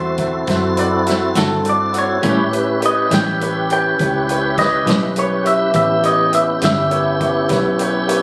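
Laid-back and gritty, this slow 12/8 blues fragment sets a slightly broken-up, twangy lead guitar from a small old amp over a lightly overdriven tonewheel organ turning on a slow rotary speaker, a woody upright piano in the background, a round foam-muted bass, a tight-kicked vintage drum kit entering at 0.2 seconds and a clean tremolo guitar from 1.4 to 6.8 seconds, all moving from D7 to A7 in a club-reverb room heard as if caught on a phone.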